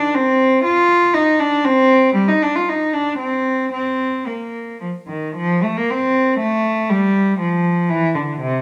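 Flowing and serene, this brief cut from a baroque-style classical suite movement in 3/4 features a single bowed cello playing solo with a nasal, reedy gut-string tone and light period-style vibrato, moving with rubato at around 104-122 BPM between C3 and F4 and settling into F major from 5.4 seconds, all captured up front by close, detailed microphones within the moderate 1.4-second bloom of a recital hall.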